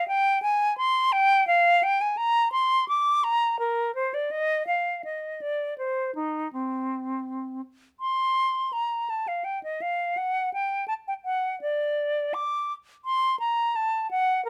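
A silver concert flute opens the recording at 0.0 seconds and carries it alone until 14.5 seconds, in a baroque-style classical fantasia cut from a longer piece. The mood is introspective and solemn, with a rubato feel that lets the phrases breathe inside a triple metre. The flute ranges from C4 up to D6, and its tone is bright and airy with a metallic sheen, shaped by expressive vibrato and soft note attacks. Close miking keeps the instrument up front and intimate, while a light reverb gives the space a gentle halo. The music unfolds as one opening passage that returns in a second statement beginning at 8.0 seconds.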